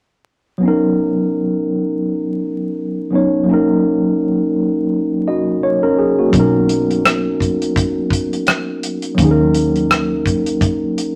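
Soulful and sensual, this short neo-soul and R&B cut moves at an unhurried 84 BPM with a lightly swung sixteenth-note feel in B major, tuned a touch below standard pitch. A worn, slightly out-of-tune tine electric piano sits up front from 0.6 seconds, its clean tone heard through built-in speakers as it alternates between Bmaj9 and D#m7 chords. At 6.3 seconds a dark, round, foam-muted fingered electric bass and a dry, damped 70s drum kit with a tight kick, hi-hat and rim click join in, all wrapped in moderate studio reverb and a bed of vinyl crackle.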